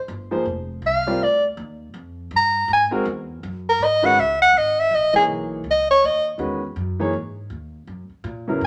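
A moderate large-studio reverb gives this short cut from a longer modal jazz performance a sense of open space, with the soprano saxophone and grand piano sitting up front. At 162 BPM in 4/4 with a swung eighth-note feel, the music has a searching, cool mood, settling into C# dorian at 4.2 seconds after opening over Fsus2, Gm and Ab7(no3) chords, and it is tuned slightly flat of concert pitch at A4 = 437 Hz. The clear soprano saxophone carries the melody as a solo in a jazz style with a soft subtone, entering at 0.9 seconds, pausing at 6.3 seconds and returning just at the close. Beneath it, a warm concert grand piano supplies intimate, vintage-toned accompaniment with deep bass, short sustain and audible action noise. The acoustic upright bass, played pizzicato on steel strings, adds a woody low line that sits well back in the mix.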